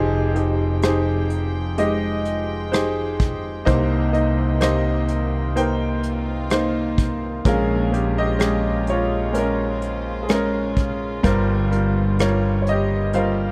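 At a slow 63 BPM in a straight 4/4, a soft brush drum kit sets a gentle pulse from 0.4 s with hi-hat, rim click and a punchy kick, its studio-room sound smooth and shadowy. This acoustic folk-pop ballad in F minor feels reflective and heartbroken, and it is cut from a longer piece. A clear, woody upright piano sits up front and carries the melody across a broad span, while a mellow fretless electric bass, round and direct, holds the low end close to the listener. In the background, a chamber string section sustains chords with a nasal, reedy, gut-string tone in a period style and a smooth top. The harmony moves slowly from Fm9 through Cm7 and Bbm7 to Gm7b5 at 11.2 s, all under a light reverb.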